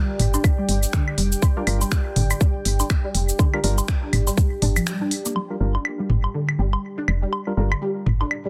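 Minimal techno at 122 BPM in G minor, sparse and cool, where a tight, tape-warm electronic kick and a woody, round FM bass sit up front with sidechain pumping on the bass, while a small-room drum kit of finger snaps, smooth hats and shaker, delayed electronic toms and woodblock, a squelchy, resonant blip pluck riff with phaser and dub echo, hollow organ-like stabs from 1.6 seconds, and a deep, moody pad over a Gm7 chord fill out the dense master, with the kick stopping at 4.5 seconds, the drum kit at 5.3 seconds, and a filter sweep on the pluck from 5.4 seconds after a short break.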